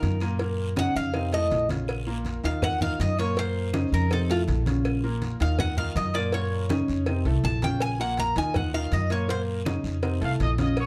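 A metallic, double-strung Cuban tres solos up front with plate reverb over a driving, passionate salsa groove, backed by a brilliant, long-sustaining grand piano, a woody, thumpy pizzicato upright bass, and background congas, round cowbell, raspy guiro and woody claves cycling through Gb6, F7, Bbm and Ebmadd9, before a punchy, vintage trumpet section with vibrato bursts in at 10.2 seconds as this dark-toned fragment cuts off.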